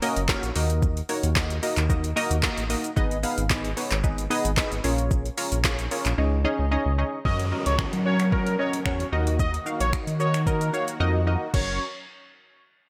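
Upbeat, euphoric dance-pop at 112 BPM in F# major, cut from a longer piece, where a punchy, funky polysynth comp with chorus and a round, deep analog bass pump against a smooth R&B drum kit of soft kick, woody snare, metallic hats, snaps, claps and shaker under gated reverb, then after a silent gap from 6.2 to 7.3 seconds a bold, warbling octave-doubled lead with vibrato and digital delay arrives over a soft supersaw pad and a background downlifter, all in bright 1980s-style digital production.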